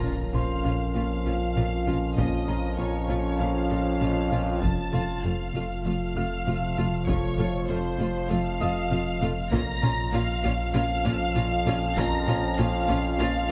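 A huge, bright impact and heavy-stick taiko open this tense, relentless cinematic fragment of hybrid orchestral and electronic film scoring, where expressive violins with portamento carry the melody over a distant second violin line, lush violas, dark trombones, mellow French horns, an ominous rumbling drone, a ringing harp-like synth pluck in arpeggios, a clean sine sub bass, and very quiet double basses and cellos, with a brilliant concert grand piano joining at 0.3 s through delay, all moving from B-flat minor to F and back in a moderate scoring-stage reverb.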